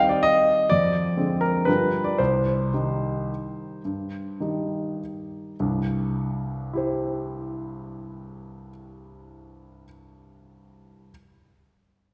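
A solo grand piano opens in C minor, playing a nostalgic, elegant classical waltz in 3/4 with a freely breathing rubato feel. The tempo drifts between 99 and 132 BPM. Over the first seconds the harmony moves from Cm through a half-diminished chord to G7 and back to Cm, and the playing slows noticeably from 1.4 to 5.6 seconds. At 5.6 seconds a new section begins on a C major chord. The piano sounds warm and intimate, placed up front with short sustain, and its mechanical action noise is clearly audible as it ranges from C2 up to F5. It sits in a wet concert hall reverb with a 1.8-second decay, and the recording has a softened, rounded top end. The short clip is cut from a longer piece.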